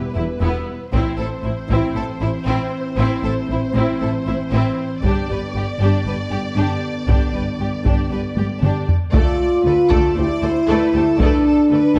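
A mellow French horn section holds sustained chords beneath a focused, lush violin melody as this excerpt of a dark, epic orchestral film cue begins, joined at 0.2 seconds by a clear second violin line, rich viola accompaniment, an expressive cello section in the background and a distant double bass, while close, dry taiko drums struck with heavy sticks sound briefly at 0.9 seconds and return at 5.0 seconds as the build-up closes with a drum fill into a new section, held within a moderate scoring-stage reverb.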